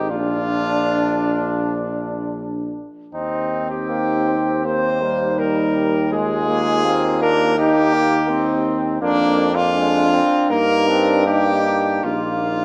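Classical brass quintet in Eb major, a noble and stately fragment at a rubato 80 BPM in 4/4 with loosely placed beats, moving from Bb through Eb to Bb/F and Eb/G before arriving at a Bbsus4 at 12.0 s. A mellow, distant trumpet carries the melody up front, while a warm, vintage-toned bass trombone anchors the low end, also forward in the mix. Behind them a flugelhorn with light vibrato adds a second line from 0.1 s, and a punchy French horn and a clear, gently vibrato-tinged trombone fill out the accompaniment, all set in a roomy concert hall reverb.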